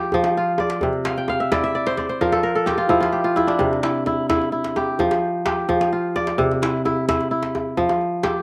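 Flowing and hypnotic, this short cut from a longer piece of West African string and xylophone music rolls along in 12/8, with an up-front fingerpicked kora spinning ringing, crisp arpeggios across a broad range and a fill from 1.1 to 3.6 seconds. Behind it, a tight, cracking djembe played with hard hands carries a band-limited, vintage tone and a slapback echo, sitting lower in the mix. The sound is dry and open-air, captured outdoors, as the harmony moves between Fsus2 and C with a brief chord-free stretch from 2.2 to 3.6 seconds.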